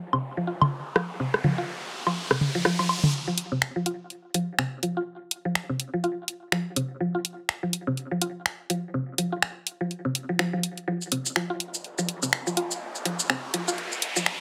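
A high-pass filtered mix set in a moderate studio reverb frames this hypnotic, cool minimal techno, moving at 124 BPM in 4/4 with a swung sixteenth-note feel. A woody, round, mallet-like synth pluck carries the riff from C3 to F4, touched with subtle chorus and tape echo and shaped by filter sweeps. A booming analog drum machine with rim click, toms and woodblock opens alongside an electronic riser until 3.1 seconds, then a tape-warm garage drum kit of finger snaps, hi-hat and shaker takes over at 3.4 seconds as the music builds, and the riser returns at 11.7 seconds.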